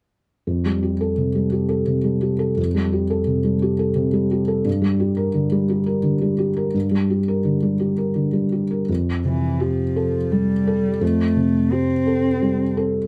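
In a triple metre that bends freely with rubato, this neoclassical piece for piano and strings unfolds with a fragile, melancholic mood. A felt-muted upright piano carries the accompaniment from 0.5 seconds, its thick felt giving a soft, mellow, intimate tone that sits up front in the mix. The harmony moves from an open Fadd9 to G minor and back to Fadd9 as a second passage begins. At 9.3 seconds a single bowed cello enters as a second line, close and woody, played sul tasto with vibrato, before stopping at 12.8 seconds. A moderate studio reverb surrounds both instruments, and the production is dark overall, giving this fragment of a longer work a hushed, shadowy character.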